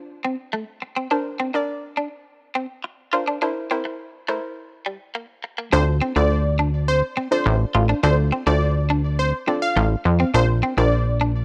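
Energetic and driving, this straight-feel pop piece in D minor moves at 104 BPM. It opens with a build-up in which a hollow, bouncy square pluck with chorus accompanies over Dm7, Bbadd9 and C7, while an up-front electric guitar at the edge of break-up picks a slightly broken-up riff. At 5.7 seconds the drop arrives with a punchy, funky analog bass carrying ring modulation and a catchy, detuned unison lead with vibrato and tape echo, all set in a dry, gritty hardware recording with digital ambience and a high-pass filter.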